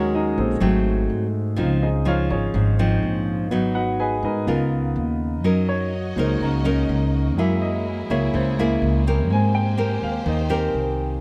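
A sunny, breezy bossa nova opens with a clear, open baby grand piano taking a solo over a full-bodied, fingerpicked nylon-string guitar with audible finger squeak and a woody pizzicato upright bass, both sitting up front. From 5.4 seconds a lush, bowed violin section adds soft-attack sustained chords with vibrato and a smooth top, beneath the piano's long sustain. The harmony moves through rich extended chords such as Dbmaj9, Db13 and Abmaj9 in a dry, close-sounding room, and the piece is cut from a longer recording.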